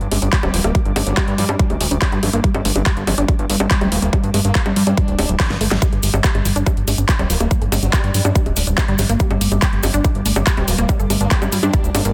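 Psychedelic and intense, this 142 BPM psychedelic trance cut in G harmonic minor is driven by a punchy, overdriven electronic kick and a big-room dance kit of bongos, handclaps, metallic hi-hats and a huge snare, with a drum fill at 5.4 seconds and a grainy, close cabasa joining at 5.8 seconds. A fat, detuned analog bass sits up front, while a lush unison pluck riff with digital delay and a swarming, warbling drone of sustained chords pump behind it, and a very quiet formant-sweep wobble bass adds a second line. A filter sweep runs on the synth arpeggio throughout, and the dense, heavily limited mix carries light reverb and digital ambience.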